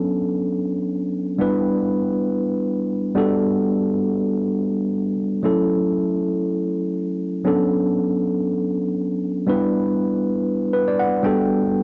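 A mellow tine electric piano plays alone in free time, its worn, slightly out-of-tune tone sitting close and up front as it moves through sultry B minor disco chords from Bm9 through Em7, Gmaj9 and F#m7, adding a fill at 10.5 seconds, all carrying a cassette-tape character in a small, moderately reverberant room in this danceable excerpt from a longer home recording.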